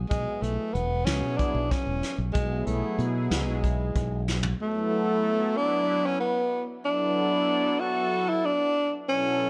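A breathy tenor saxophone leads this short, intricate progressive instrumental, playing a mellow, jazz-style solo line with light vibrato, soft attacks, scooped notes and a smooth top, set in plate reverb and tape echo. The band drives along at 187 BPM in 7/8 with a straight feel, in B dorian with tuning slightly below standard pitch. Underneath, a round, punchy fretless electric bass sits up front, while a vintage brush drum kit adds a fat snare and punchy kick, sounding roomy and distant with a rolled-off top. A sweeping, resonant pad built from detuned sawtooth and triangle tones with ring modulation evolves through slow attacks, filter swells and long, sustained releases, its bright, full-bodied sound thickened by chorus and plate reverb. A drum fill at 4.3 seconds closes the opening section, after which bass and drums drop away and the saxophone and pad carry on alone until 9.5 seconds, the harmony moving from F#sus2 to Bm7. 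The production is dark and warm, with a moderate studio ambience.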